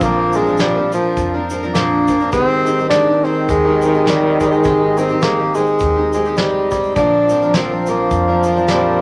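A lightly swung 4/4 groove at 104 BPM carries this hopeful, warm acoustic folk piece in Bb mixolydian, where an up-front bassoon with light vibrato sings the melody over a mellow French horn second line, a shimmering octave-doubled picked twelve-string guitar, woody pizzicato upright bass, soft brush drums with a tight kick and a grainy shaker tucked in the background, set in a moderate club reverb as the chords move from Bbadd9 to Abmaj7 at 2.3 seconds and back at 7.0 seconds.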